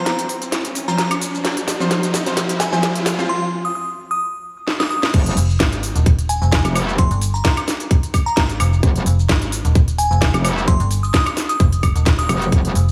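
This bass house excerpt struts at 130 BPM in 4/4 with a light sixteenth-note swing, gritty and swaggering in mood. It opens in a build-up where a glassy, crystalline synth bell carries the melody through chorus and digital delay, alongside a bold, punchy orchestra-hit-like synth stab with detuned sawtooth layers, a filter sweep and sidechain pumping. A riser and drum fills from an up-front garage kit, with its cracking snare, crisp hats, shaker, woodblock and crash, push toward a brief break at 3.3 seconds. The drop lands at 5.1 seconds on an Ebsus2 chord, bringing in a tight electronic kick and an aggressive wobbling bass with a saturated, bright edge. Moments later a mellow, digital FM bass with overdrive joins, and both basses pump against the kick. The bell melody continues over the low end, and a lush hall reverb with a touch of small-room ambience gives the mix depth.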